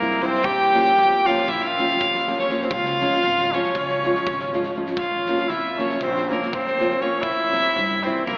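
Heard through a thin AM-radio filter and bathed in the long, wet reverb of a church or concert hall, this short cut from a longer piece has a distant, haunted glow. It is Balkan folk in the manner of a wedding band, in a straight 9/8 with a bittersweet, restless mood, moving through Bbm, Db and back to Bbm before turning to C near 7.2 seconds. Up front, a single bowed fiddle carries the melody with a biting, earthy edge and light vibrato, while a punchy, classical-style trumpet plays a second line beneath it, also with light vibrato. A small, bright nylon-string guitar is fingerpicked as accompaniment and drops out at 8.2 seconds. Further back, a woody, thumpy upright bass plucked on gut strings sits low in the mix alongside a big-room drum kit with a fat snare and a punchy kick.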